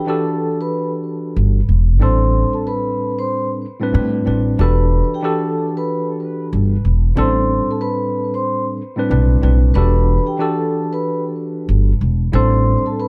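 A moody, gritty boom-bap hip-hop excerpt in E minor at 93 BPM, with a swung 16th-note feel, opens on a worn, slightly out-of-tune tine electric piano with a cassette-tape character, moving between Em11 and Am11 chords, while from the very start a soft-mallet vibraphone, motor off, rings a metallic melody through tape echo above it. At 1.4 seconds a woody, growly pizzicato upright bass on steel strings comes in up front and holds the low end until 12.8 seconds, all set in a small room with a dark, warm production.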